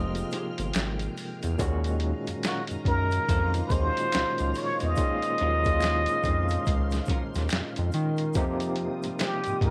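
R&B and neo-soul at a slow, swung 71 BPM, this introspective, sultry excerpt sets a breathy plunger-muted trumpet melody with slapback echo up front over a barky, overdriven tine electric piano with fast tremolo, a smooth sawtooth synth bass, and a gritty, pitched-down boom bap sampler-style kit with a thumpy kick. A very quiet mellow horn section plays stabs, while a lush string machine with ensemble chorus, a clean semi-hollow electric guitar second line, and a distant egg shaker with finger snaps sit in the background of a small room, moving from Fm9 to Ebm9 at 1.6 seconds and back to Fm9 at 8.4 seconds.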